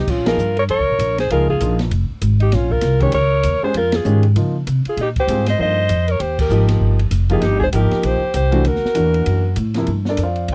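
A punchy, forceful alto saxophone carries the melody up front with vibrato and a smooth top, while a second alto, raspy and growling, adds a distant, roomy line beneath it in this intense, cool modal jazz excerpt cut from a longer piece. A woody, growly pizzicato upright bass sits up front, an intimate upright piano with audible action noise fills in the harmony, and a dark-cymbaled acoustic drum kit with a boomy kick swings along as the band hits accents at 0.2, 3.9 and 6.4 seconds. The saxophones drop out at 9.6 seconds, leaving bass, piano and drums to close the dry, close 1970s-style studio sound.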